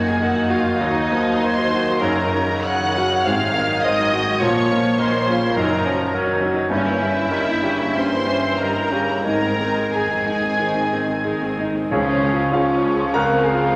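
A clear, up-front concert grand piano with a deep bass carries the melody of this passionate, lyrical romantic movement in Db major, joined from the start by a smooth violin section on the tune while a lush, focused second violin section and a distant, pure silver flute add second lines over a background viola section, a roomy bassoon, and very quiet cello and double bass sections. A warm, very quiet French horn section enters at 0.8 seconds with sustained chords as the rubato 4/4 pulse moves between 87 and 106 BPM through minor-leaning harmony that turns to Db at 11.9 seconds. There a vintage-toned oboe adds a second line, a barely audible tuba joins the bass, and round timpani strike briefly, all bathed in a wet concert-hall reverb in this excerpt from a longer piece.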